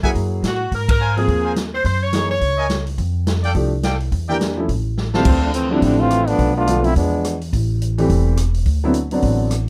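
A punchy, close-miked trombone section stands out most in this joyful, brassy big band swing excerpt, taking a solo with light vibrato from 5.3 seconds as the second section begins. Before that, a bright, loose saxophone section carries the melody with vibrato in the opening seconds, while a clear trumpet section punctuates the first half with ensemble stabs. Underneath, a woody pizzicato upright bass with steel strings and an up-front concert grand piano with deep bass keep the accompaniment moving through rich extended jazz chords. A swinging drum kit with a medium-tuned snare and kick drum works across ride, hi-hat, crash and rim clicks, set in a natural studio room. A band accent lands at 0.9 seconds and a drum fill leads into the trombone feature, all captured with close, detailed microphones and light reverb.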